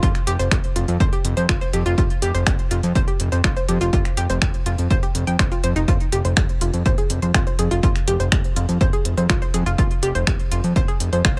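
A driving, straight 4/4 pulse at 123 BPM in F minor anchors this dramatic, cinematic melodic techno excerpt, where a punchy, up-front electronic kick and a tape-tinged techno kit of finger snaps and smooth, sidechain-pumped hi-hats support a fat, saturated, detuned sawtooth-and-square bass that pumps beneath round analog pluck arpeggios carrying chorus, delay, a noise layer and a filter sweep, all in a dry, close sound with the harmony settling on F5 at 5.9 seconds.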